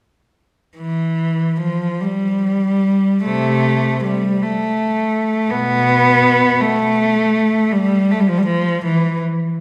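Serene and lyrical, this brief excerpt from a longer classical piece presents a single unaccompanied cello playing freely in a slow, rubato 6/8, with the dotted-quarter pulse sitting around 48 to 57 BPM. The bowed cello enters at 0.8 seconds and sings until 9.2 seconds, moving between B2 and B3. Its tone is rich and smooth, with an even, vibrato-laden line that feels close and up front. A single player carries the whole expressive statement, tuned slightly below standard pitch. The instrument sits in a reverberant recital hall or church, whose lingering 1.8-second decay lets the sound bloom around each phrase.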